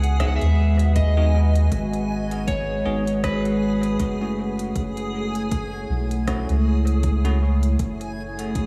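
Ambient dub with a hazy, meditative mood, cut from a longer piece, where a round, up-front sub bass and a moody, detuned pad with chorus and slow attack sit under a reversed, granular swelling texture. A dark, slightly broken-up slide guitar carries the melody with dub echo until 4.0 s, while a bell-like, clean tine electric piano adds echoing stabs. A background overdriven kick enters at 0.2 s beside a crisp electronic kit of hi-hat and rim click with dub echo, all over a light digital room ambience.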